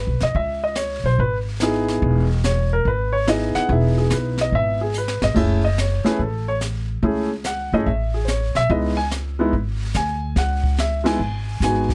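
This jazz piano trio piece swings at 144 BPM in 4/4, a late-night passage in C# minor cut from a longer performance. The grand piano carries the melody, intimate and close, with audible action noise and long sustain, while the plucked upright bass anchors the low end with a woody, thumpy gut-string tone, both placed up front. The drum kit, played with brushes, comes in at 0.2 seconds, sitting lower in the mix, with dark cymbals, a high-tuned snare and a boomy kick. The harmony moves from C#m7 to F#m7 and back to C#m7. A drum fill arrives at 4.9 seconds, and the band hits a shared accent at 11.0 seconds. The dry, natural sound has little reverb, giving the trio the feel of a studio room.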